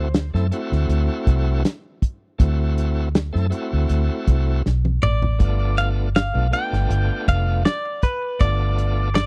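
A straight-eighth soul blues groove at 80 BPM in 4/4 with a light sixteenth-note swing rolls along rollicking and soulful over D7 moving to G7 at 5.4 seconds, driven by a dry, dark soul drum kit with a tight kick and medium-tuned snare that plays a fill from 4.6 seconds, a round, foam-muted fingered electric bass up front, and a shouting tonewheel organ with light overdrive and fast rotary speaker, while a twangy, clean, direct-recorded electric guitar carries the melody briefly at the start and returns at 5.0 seconds, all captured in a close, 1970s-style small-room sound, cut from a longer piece.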